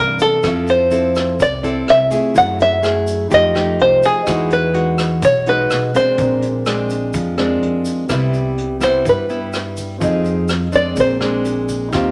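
Romantic and sunny, this bossa nova excerpt sets a twangy, plunky fingerpicked open-back banjo up front over fingerpicked nylon-string guitar, a mellow dark concert grand piano with audible action noise in the background, woody pizzicato upright bass, a vintage brush drum kit with a punchy kick and rim click, and a grainy egg shaker, all in a large studio reverb, with the banjo taking a solo from 8.1 seconds.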